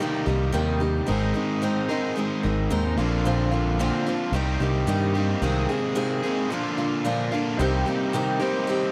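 A dry, close 1970s-style studio sound with light reverb frames this wistful, dusty folk rock and heartland rock fragment in C minor, moving at 111 BPM in a straight 4/4 through Cm7, Abadd9 and Bbadd9 chords. A bright, picked steel-string acoustic guitar and a crunchy, double-tracked overdriven electric guitar riff sit up front together, joined at 0.3 seconds by a growly, amped electric bass. At 7.6 seconds a clear, worn baby grand piano with long sustain enters in the background as the music returns to Cm7.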